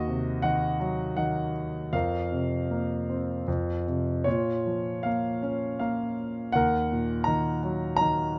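In a rubato 3/4 lilt of about 75-84 BPM, this dark, reflective classical piece in Bb minor unfolds on a lone concert grand piano, spanning Eb2 to Bb5 across the 8.4-second cut from a longer work. Harmonies drift from Cdim/Eb through Fsus4 to Bbm at 4.3 seconds and settle on Ebm at 6.5 seconds. The close, detailed miking places the intimate, natural-sounding piano up front, with deep bass and audible action noise, set in a moderate recital-hall reverb.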